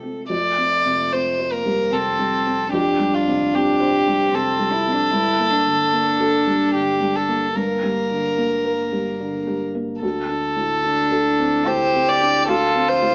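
Tender and hopeful, this rubato neoclassical piece in 3/4 sets a dark, intimate felt-muted upright piano with audible action noise beneath an up-front, sul tasto solo violin melody entering at 0.3 seconds, a floating bowed cello second line and a deep sine sub bass with octave sitting in the background, over Fsus2, Gmadd9 and Dm7 chords in a moderate stone room with a small-speaker sound.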